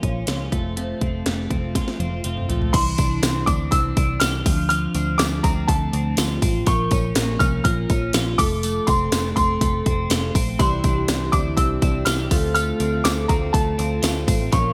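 A bright, breezy jangly indie pop piece opens with twangy, chorused twelve-string electric guitar arpeggios and a fingerpicked, full-bodied jumbo acoustic guitar with finger squeak, over a dark, round, foam-muted electric bass and a punchy, up-front electronic drum kit with a cracking snare and gated reverb, which plays a fill into the next section. At 2.7 seconds the acoustic guitar drops out as a woody, polished upright piano takes the high melody, joined by a mellow vibraphone second line with slow motor vibrato and a faint, jingly tambourine. The acoustic guitar returns at 10.6 seconds within a bright 1980s-style digital production with light reverb.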